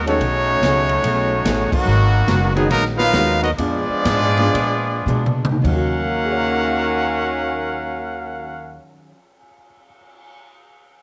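Light reverb and a small-room ambience frame this sultry, dramatic big band swing passage, cut from a longer piece, with a clear, up-front trumpet section carrying the vibrato-laden melody over a bright trombone section holding a second line in the background. A woody pizzicato upright bass, a warm, intimate baby grand piano with audible action noise, and a full-bodied picked jumbo acoustic guitar fill out the accompaniment alongside a polished, airy drum kit with a punchy kick. The band hits an accent at 1.7 seconds, then slows down until 5.6 seconds, with a drum fill from 5.1 seconds ushering in the second section.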